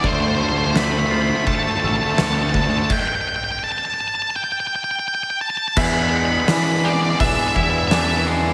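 This brooding, cinematic post-rock passage at 84 BPM in 4/4 opens with the full band at once, led by an up-front octave-fuzz lead guitar whose dark, distorted melody rides over a build-up on a Dm7 chord. Underneath, a bright overdriven semi-hollow guitar with slapback echo and a thick, murky fuzz guitar play riffs, while a growling fingered electric bass adds punchy drive and an oversized low-tuned drum kit pounds with a fat snare, punchy kick and dim cymbals in a pumping stone room. Tucked far back are a clean, twangy electric guitar and a felt-muted upright piano, both playing mellow arpeggios, along with a brassy, detuned analog pad holding soft-edged sustained chords shimmering with chorus and vibrato. The thick fuzz guitar drops out at 2.9 seconds as the harmony falls away into a stop, and at 5.8 seconds a new section arrives on an E7 chord. A lush hall reverb gives the whole passage a big arena sound, and it is cut from a longer piece.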